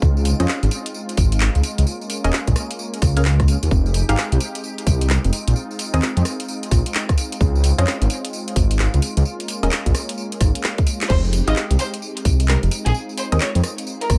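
A late-night, bouncy two-step garage groove opens with a deep, rumbling detuned saw bass up front, a tight, layered electronic kick and a swung garage kit of hats, rim click, handclaps, tambourine and crash cymbal, all beneath a smooth, chorused analog pad with sidechain pumping. Punchy, full-bodied chord stabs with a filter pluck, phaser and dub echo move through a repeating progression of ninth and suspended chords. After a drum fill at 10.6 seconds, a clear, lush violin section enters at 11.1 seconds, distant and bowed with vibrato and dub echo.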